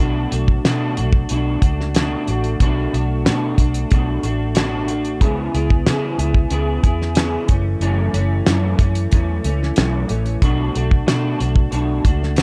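Indie pop with a bedroom-pop lean, this wistful, mellow excerpt moves at 92 BPM in a straight 4/4 in B dorian, tuned to A4 = 444 Hz, with chords running Bm7, C#m7 and F#m7 before returning to Bm7 at 10.4 seconds. Up front, a bright, twangy electric guitar through a small old amp plays picked, slightly broken-up accompaniment coloured by analog chorus and vibrato, over a round, foam-muted fingered electric bass. A cloth-damped, thuddy drum kit joins at 0.3 seconds with a fat snare, tight kick and hi-hat, its top rolled off, all set in a small room with a dark production.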